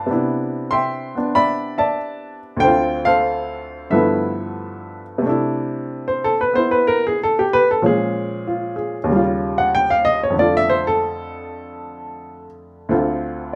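Sophisticated and warm, this short solo jazz passage, cut from a longer piece, moves at 94 BPM in 4/4 in C major, with a swung eighth-note feel and a loose, rubato sense of time. A clear, woody upright piano sits up front with a natural tone and short sustain, spanning D2 to C6 in a moderate studio reverb. It opens on rich chords like Cmaj9 and G13 before shifting at 5.2 s into a second passage that colours the harmony with Bbm7 and Eb9, then settles on F6 and Dm7.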